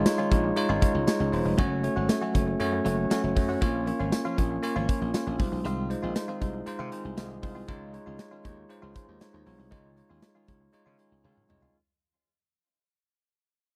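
A bell-like tine electric piano sits up front in this glossy, nostalgic 1980s-style pop excerpt in Db major at 118 BPM, backed by a punchy slap bass, a big rock drum kit with tambourine and toms, and a twangy, picked clean guitar riff with subtle chorus and tape echo in the background, all in a dry, close studio sound that fades out over its length, with piano fills at 6.7 and 10.7 seconds and a drum fill at 11.2 seconds.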